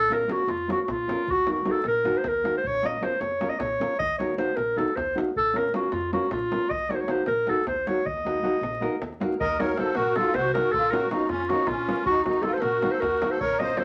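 Restless and fiery, this Balkan wedding-band excerpt in a straight 7/8 at 311 BPM sets a warm, classical-style clarinet up front over dark thumb-plucked nylon-string guitar, woody pizzicato upright bass on gut strings and a deep, close davul, with a reedy, shimmering musette accordion entering at 9.4 seconds as a second line, all colored by a wet studio reverb and vinyl crackle as the harmony sways between Bbm and Ebm.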